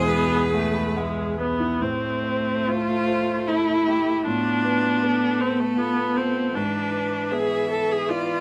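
Violin, viola, cello and concert grand piano sound together from the very start of this brief passage, cut from a longer piece. It is a slow, elegiac romantic movement for piano quartet in A minor, in 3/4 at 68-80 BPM with a rubato feel. The bowed violin carries the yearning melody with a rich, focused tone and vibrato, while the cello sings a clear second line beneath it. The viola and piano share the accompaniment and sit up front. The viola is even and smooth with vibrato, and the piano is warm, intimate and vintage in character, with deep bass and audible action noise. An opening E chord gives way to A minor at 1.8 seconds, then moves through Bm7b5 over A at 4.3 seconds and E7 over G# at 6.5 seconds, all within a moderate small-room reverb.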